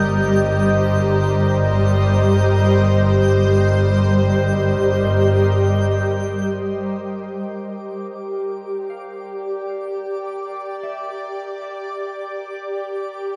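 Floating in free time, this reflective, melancholic ambient fragment is cut from a longer piece. A shimmering, ethereal pad sustains chords throughout, its slow-attack sine tones warbling with chorus and an octave-up shimmer that sits bright and up front. Beneath it, a dark studio double bass section holds a bowed low G with expressive vibrato and portamento until 6.5 s. Meanwhile a twinkling FM granular texture sparkles high in the background. The harmony moves from Eb6/G to G minor at 6.6 s, settling into G dorian as a very quiet, clean picked electric guitar enters with arpeggios and a synth texture fades in. A lush concert hall reverb and a dark, warm production wrap the sound in a soft, spacious haze.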